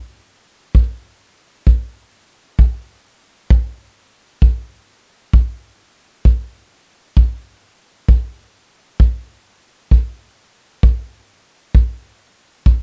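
A tight, acoustic kick drum with brushes sits up front from 0.7 seconds in this soulful, gritty blues fragment in 12/8 at 66 BPM (dotted quarters), captured in a dry, close 1970s-style studio room with a natural sound.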